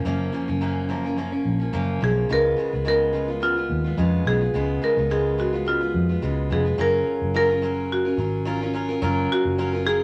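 A full-bodied, picked steel-string acoustic guitar opens this hazy, laid-back bedroom pop excerpt in F# major at 107 BPM, its warbly pitch drift and finger squeak sitting up front over a lightly swung 16th-note feel, joined almost at once by a dark, round, foam-muted vintage electric bass with a punchy, amped tone. At 2.0 seconds a marimba struck with medium hard mallets takes the melody in a narrow upper range, carrying a warm tone as the harmony moves from F#maj7 to C#7. The parts sit in a moderate studio reverb with a faint mains hum beneath, and the chords return to F#maj7 at 6.8 seconds as the passage moves into a new section before the cut.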